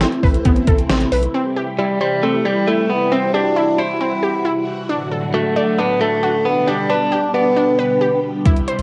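A clean, direct-recorded electric guitar carries the melody up front from 1.8 to 8.2 seconds, its picked, compressed tone bathed in spring reverb and tape echo. This nocturnal, driving synth-pop excerpt, cut from a longer piece, sits in 4/4 with a straight feel, built on a swirling phased string machine that holds bright, vintage chords throughout, coloured by ensemble chorus and phaser. A lush, detuned unison pluck spins punchy, wave-folded arpeggios with a filter sweep and tape echo across the whole passage. A detuned 8-bit drum machine with a thumpy kick, fat snare and hi-hat pushes up front alongside a round, deep analog bass, both heard only in the opening 1.3 seconds and again at 8.5 seconds. The chords move from Amadd9 to C, D and G, and the whole recording carries the feel of a home cassette recording in a small, reverberant room.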